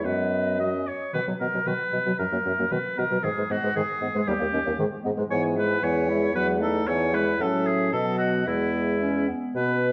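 Spirited and lively, this quick classical-period movement for wind quintet moves at 114 BPM in a straight 2/4, opening in B major and shifting to E major at 5.3 s. It is cut from a longer piece. The silver concert flute carries the airy, metallic melody with vibrato and tongued notes, though it sits distant and in the background. Up front, the oboe plays a second line with light vibrato, while the mellow bassoon anchors the bass, also with vibrato. Between them, the dark, vintage French horn and the roomy clarinet supply accompaniment, with the clarinet dropping out at 9.6 s while the others continue to 9.9 s. A recital hall's reverb wraps the ensemble in a dark, warm production.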